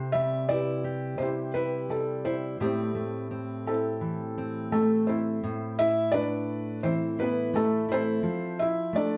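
A felt-muted upright piano carries the melody in this reflective, heartbroken folk piece, its soft, mellow tone sitting up front with audible action noise and a touch of slapback echo. Beneath it, a fingerpicked steel-string jumbo acoustic guitar supplies full-bodied accompaniment, also close and present. Both parts play throughout the short cut, moving at a straight 85 BPM in 4/4 in A minor. The harmony drifts from Cmaj7 to Am7, and when the opening passage returns at 5.4 seconds it shifts through Amadd9 before settling on Fmaj7. A moderate studio reverb surrounds the pair.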